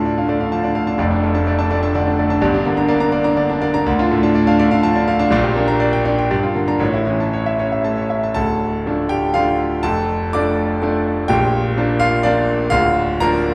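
A solo concert grand piano opens the recording at once: a stormy, agitated classical virtuoso study in triple time, played with a flexible, rubato feel. The instrument sounds clear and polished, placed up front and intimate, with audible action noise and long sustain. Its range reaches from deep bass notes up into the high treble. The harmony stays dark and minor, settling on a major chord at 6.8 seconds before a new section begins at 8.4 seconds, which carries the music through to the cut at 13.5 seconds. A wet recital hall reverb surrounds the piano, giving the fragment, taken from a longer piece, a resonant sense of space.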